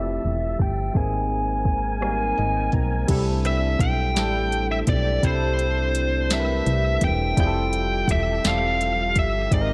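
A distorted, up-front fuzz lead guitar carries the melody over a barky, lightly overdriven tine electric piano with analog chorus, a faint tonewheel organ turning slowly through its rotary speaker, a punchy, round FM bass and a soft-kicked, sharp-snared electronic R&B kit that enters at 0.2 s, in this sensual, slow six-eight R&B cut from a longer piece at 56 BPM in C major, where a filter sweep opens the first 3.1 s, an electric piano fill arrives at 2.0 s, and the dreamy, reverb-soaked mix moves from Fmaj9 and Abmaj9 to C6.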